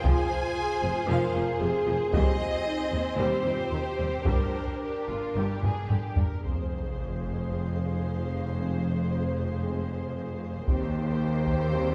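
Heard from further back on a wet scoring stage, this heroic, epic cinematic orchestral cue, cut from a longer piece, sets a rich, vibrato-laden violin melody over a clear, intense second violin line, smooth violas, mellow French horn chords in the background and even, lush cellos and double basses on the bass. Heavy-stick taiko drums sound from the start, with a fill at 5.6 s, before a huge, bright sub drop lands at 6.4 s and the taiko falls silent at 7.5 s, returning briefly near the close.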